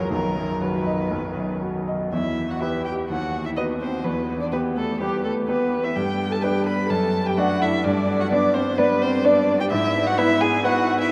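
A quick classical-period movement for piano trio, this short piece cut from a longer work feels lively and graceful, its pulse bending with a rubato ease. A single muted violin carries the melody con sordino, its veiled, dark tone shaded with vibrato and sounding distant yet placed up front. Beneath it, one muted cello bows a second line with a soft attack and light vibrato, its voice similarly hushed and shadowy. The grand piano supplies the accompaniment with a brilliant, vintage sparkle, smooth in touch and rich in long sustain, standing forward in the mix. All three play together throughout, with a brief opening passage giving way at 2.1 seconds to a longer second section whose harmony shifts toward G around 6.0 seconds. A huge, wet reverb places the trio in a vast, echoing space, letting every phrase hang in the air.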